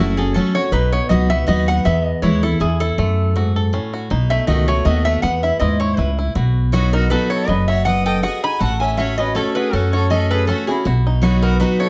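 Bluegrass in a rustic, joyful 3/4 at 160 BPM with a swung lilt, cut from a longer piece, where a twangy fingerpicked banjo and an up-front, metallic lap resonator guitar carry the melody (the slide dressed in slapback echo) over a bright, full-bodied picked steel-string guitar and a woody, thumpy upright bass, while a clear, earthy bowed fiddle joins with a second line at 6.7 seconds as the chords move through F#m, B and E under a moderate studio reverb with a rolled-off top end.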